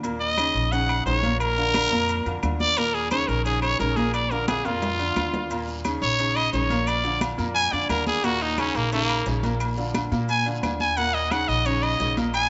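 A growling, gritty trumpet solo sits up front from 0.2 s, its raspy, vibrato-laden tone leading a driving, passionate salsa at 176 BPM over Ebm7, Bb and Eb5 harmony. A bright, polished upright piano with short sustain accompanies it, a woody pizzicato upright bass holds the low end, and background congas played with hard hands join ringing agogo bells and timbales, grainy maracas and very quiet claves. A drum fill arrives at 4.5 s, a saturated guiro enters at 5.5 s, and a moderate plate reverb gives the cut from a longer piece its sense of space.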